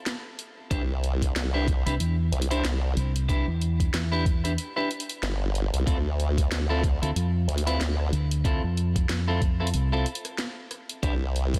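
Playful and gritty, this glitch hop excerpt moves at 93 BPM in D dorian with a swung 16th-note feel. A layered electronic kit of cracking snare, rim click and bright hats opens at 0.1 s. From 0.7 s a thumpy, compressed kick and an up-front, saturated sawtooth-and-sine wobble bass with formant filtering and chorus arrive, alongside clean, picked electric guitar stabs that pump with sidechain and echo through digital delay over Cmaj7 and Dm7. A round, punchy fingered electric bass joins between 1.9 and 10.0 s, all set in digital ambience under a dense, heavily limited modern master.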